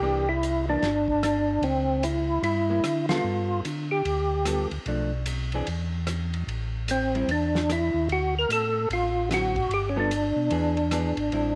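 Bluesy and soulful, this short excerpt of a swinging soul jazz organ trio at 148 BPM in G mixolydian features a fat, percussive tonewheel organ with key click and slow rotary speaker carrying the melody over a dark, picked hollow-body guitar, a round, mellow organ bass line, and a muffled, lo-fi drum kit with a fat snare that enters at 0.4 seconds, all in light reverb, with a band accent at 3.0 seconds and chords moving from C9 through G9 and D9 to E7.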